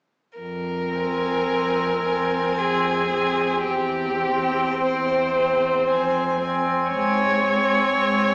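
A rubato three-beat pulse gives this slow romantic string quartet movement a solemn, elegiac sway, cut from a longer classical piece. At 0.4 seconds a rich, evenly bowed violin on the second line and a focused cello bass enter together, and at 0.9 seconds a second violin takes the high melody, up front with a smooth top, as the viola holds a single inner note that sounds distant. Each part is played by one player with vibrato, and the harmony moves from F minor through C over E and back to F minor before settling on A-flat. The recital hall reverb is wet, heard from further back in the room with a small speaker sound.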